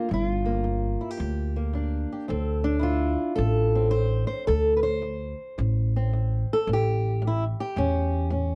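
A boxy, dark-toned fingerpicked old ladder-braced acoustic guitar carries the melody up front in this smoky, mournful acoustic country blues fragment in D minor at 110 BPM with a swung 4/4 feel, backed by a thumpy gut-string upright bass played pizzicato over Gm7, Dm7 and A7 in a dry, close 1970s-style studio sound.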